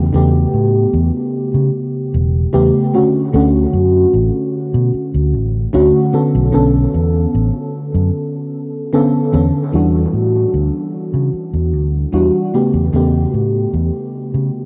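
A straight 4/4 pulse at 75 BPM carries this hazy, nostalgic vaporwave fragment in E dorian, tuned slightly low, with chords moving from A9/E through Dmaj7 and Bm9 before a second section opens at 9.7 s on Em9 and returns to A9/E. A mellow FM electric piano supplies soft, full-bodied accompaniment with a fast attack, decaying tones, a noise layer, analog chorus and tape echo, while a fingered electric bass sits up front with a dark, amped, punchy sound. A huge ambient reverb and cassette-tape grain wrap the whole recording in a dreamy, worn haze.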